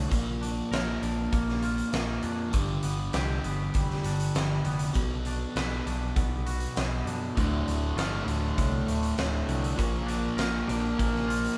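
A sludgy, overdriven guitar riff and a twangy, clean electric guitar's arpeggios open this brooding, dark stretch of quiet-loud alternative rock, joined at once by a growly, punchy picked bass and a big acoustic drum kit with a fat snare and punchy kick sitting up front in a bright stone room. The band plays live together in one room under light reverb, moving through Bb, G, Bm and Dm chords in a straight 4/4. At 7.4 seconds a compressed fuzz guitar adds a second riff, carrying on until the excerpt is cut off at 11.6 seconds.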